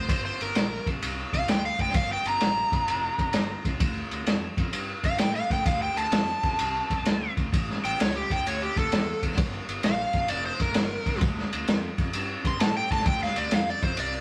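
A bright, overdriven slide guitar played with fingerpicks leads this gritty, heavy blues rock and southern rock fragment in D minor, soloing up front with slapback echo over a round, fuzzed-out fingered bass at a swung 129 BPM in 4/4. A vintage acoustic kit of punchy kick, medium-tuned snare and dark ride cymbal sits up front, muffled and lo-fi with a rolled-off top, while the chords move from Gm to Dm, A, and back through Gm to Dm. The whole take has the rough, tube-saturated feel of a rehearsal room, with a moderate small-room reverb.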